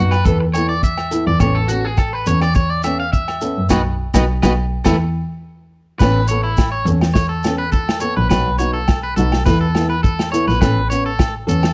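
A rich, bowed double bass sits up front with vibrato and portamento in this carefree highlife guitar-band excerpt at 104 BPM in A major, where a twangy, slightly broken-up electric guitar picks arpeggios through warbly pitch drift and slapback echo over a dark, fingerpicked flamenco guitar, a punchy vintage drum kit with a rolled-off top, ringing agogo bells in the background and a grainy, mellow shekere, with a clean electric guitar solo over the first 6.0 s, a band accent from 3.7 s and a drum fill from 4.9 s, recorded dry and close in a 1970s-style small room.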